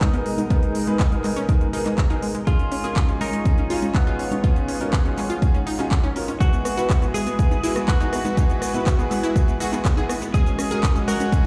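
An expansive, emotional progressive house build-up at 122 BPM opens at once with an overdriven, deep kick up front, crisp hats, handclaps and shaker from a tape-warm pop kit, and a twangy, clean electric guitar melody under a filter sweep and delay. Around it sit a thick, detuned sawtooth pad with chorus, phaser and sidechain pumping; bright, punchy pluck arpeggios; smooth vintage grand piano stabs; and analog-toned electronic congas and rim clicks tucked in the background, all moving through G#madd9, C#add9, Eadd9 and F#sus2. A barely audible riser creeps in at 9.3 seconds, and the whole excerpt rings in a large, reverberant room.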